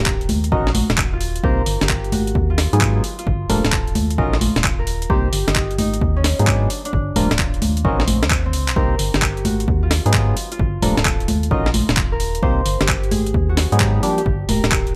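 Soulful and moody, this UK garage cut from a longer piece moves at 131 BPM in 4/4 with a two-step swing on the sixteenths, set in C minor and tuned slightly below standard pitch. A ringing acoustic Celtic harp carries the melody from C4 to C5 throughout, treated with a delay, while a dark, hollow FM bass with an organ-like tone, a fast attack and a decaying body anchors the low end. Nasal, mellow organ stabs with a wave-folded edge, treated with chorus and tape echo, punctuate the harmony as it cycles through Ebm7, Cm7, Abm7 and Gm7. The rhythm section pairs a gritty, pitched-up sampler-style break of congas, handclaps, hi-hat and a medium-tuned snare, compressed and up front, with a dry, punchy analog kick. A drum fill arrives at 8.3 seconds, and the whole mix sits close and dry, with little reverb.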